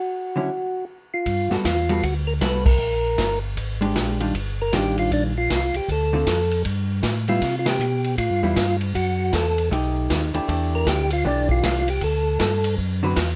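Soul jazz organ trio in a bluesy, swinging mood, cut from a longer piece, with swung eighth notes. A clean tonewheel organ with third-harmonic percussion carries the melody through a slow rotary speaker, joined almost at once by a picked, compressed hollow-body electric guitar comping alongside. At 1.3 seconds a second tonewheel organ takes up the bass line, its round tone lightly overdriven and colored by chorus vibrato and the same slow rotary, while a swinging big-band drum kit enters with ride, hi-hat, snare, kick and crash. The kit sits distant and roomy, with a boomy kick and a rolled-off top, and the band hits accents together at 2.6 and 7.6 seconds. Extended chords such as Gmaj9, Bb6, Ebmaj9 and B7b13 give the harmony a lush, jazzy color, and the dry sound keeps both organs up front.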